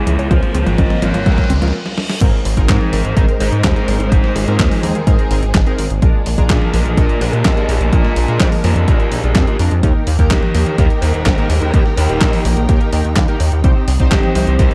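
A punchy, tape-warm electronic kick sits up front in this sunny, danceable italo disco passage at 126 BPM in Ab major, cut from a longer piece. It opens with a brief build: a drum fill, a riser and reverse cymbal, a filter sweep on the polysynth and a very quiet, detuned unison pluck running arpeggios until 1.7 seconds, followed by a short stop before the groove lands at 2.2 seconds. A glossy, chorused synth bass with tube saturation drives underneath, while an overdriven 12-bit drum machine adds snare, handclaps, hi-hat, toms and crash with a large-room ambience. Over this, a dark, smooth electric lead guitar plays the melody through overdrive and tape echo, backed by lush bowed strings holding sustained chords with vibrato and portamento and a retro polysynth stabbing in the background with gritty sampler character. The chords move from Bbmadd9 through Abadd9, Bb7 and Eb to Cm, and the overall production is dark and dry with little reverb.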